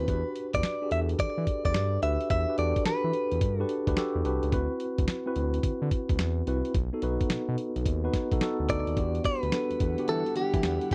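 A bright, picked clean electric guitar with slapback echo carries the melody up front, playing from the start until 3.9 seconds and returning at 8.7 seconds in this short, punchy new jack swing cut at 108 BPM with a confident 16th-note swing. Beneath it, a mellow tine electric piano heard through its built-in speakers supplies the accompanying chords, while a smooth sawtooth-and-triangle synth bass with a fast attack holds down the low end. A dusty, sampler-style drum kit with a gritty, compressed character drives the groove with a thumpy kick, medium-tuned snare and hi-hat. The harmony moves from Em9 through D13 and B7 before landing back on Em9 at 9.0 seconds. Shortly after, at 9.4 seconds, an ethereal, airy pad with ensemble chorus and its own reverb drifts in softly behind the band. The overall sound is dry and close, in the manner of a 1970s studio recording.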